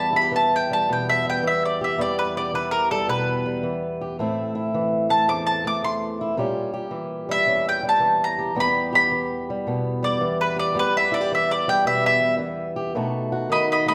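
Acoustic country blues with a brooding, smoky swing, this short cut from a longer piece features a round, double-strung mandolin picking the lead melody up front from 0.0 s to 13.9 s over a dark, woody, boxy ladder-braced guitar fingerpicked on old strings, both set in the wet reverb of a church or concert hall as the chords move from Em through Am and A#dim7 back to Em before landing on B7 at 13.0 s.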